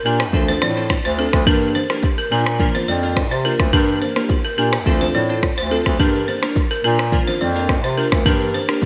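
A bright 1980s-style digital sheen with lush hall reverb frames this hypnotic, smooth afrobeats excerpt in G minor at 106 BPM, where an electronic afro-pop kit with a deep kick, snaps, rim clicks and shaker sits up front in gated reverb beside a warm, roomy bass clarinet bass line, while glassy, detuned digital keys with chorus and a filter sweep comp over Dm7, Gm and Bb, a woody, buzzing balafon riff rings through digital delay, and congas and bongos enter at 0.3 s in the background.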